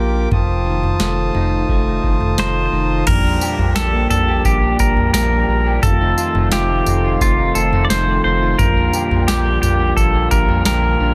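Blissful and ethereal, this dream pop excerpt sets a smooth principal-stop pipe organ holding sustained chords and a slightly broken-up picked electric guitar weaving chorus-and-delay arpeggios over a thick, saturated sine sub bass, while a booming analog drum machine with a deep kick, crisp snare, tambourine, toms and crash enters at 0.3 seconds and a bright, clean pedal steel guitar sings an up-front, delayed slide melody with volume swells from 2.4 seconds, all alternating between F7 and Bb6 in a dense, heavily limited modern master with light digital ambience.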